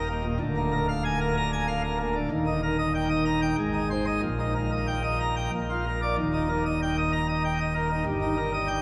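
A brilliant, full pipe organ plenum with mixtures and baroque chiff sits up front in this jubilant classical organ toccata at 95 BPM in 3/4, a short cut from a longer piece in Eb major (tuned to A4 = 441 Hz), sounding alone from a deep D1 up to Bb5 through chords moving from Bb7/D to Eb, Ab and Bb before a new section opens on Eb at 6.2 s and settles on Eb/G, all bathed in a wet cathedral reverb with a 5.3-second decay.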